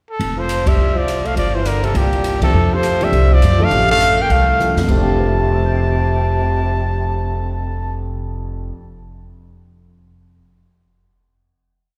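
A brisk swing at 205 BPM in 4/4 drives this short, playful jazz piece in F major, with pizzicato upright bass playing a thumpy, woody two-feel up front while the airy drum kit rides its dark cymbals with sticks over a boomy kick, snare and hi-hat. A clear trumpet carries the melody in close-miked motif-based phrases with light vibrato, and the tenor saxophone shadows it with a soft-attack harmony line, mostly in sixths. A warm grand piano slips in at 2.4 seconds, comping syncopated drop-2 voicings in the background. Band accents punctuate the opening bars, and a drum fill at 4.6 seconds leads into a final chord held from 4.9 seconds. The whole sophisticated miniature rings out in a spacious church reverb that lingers on every note.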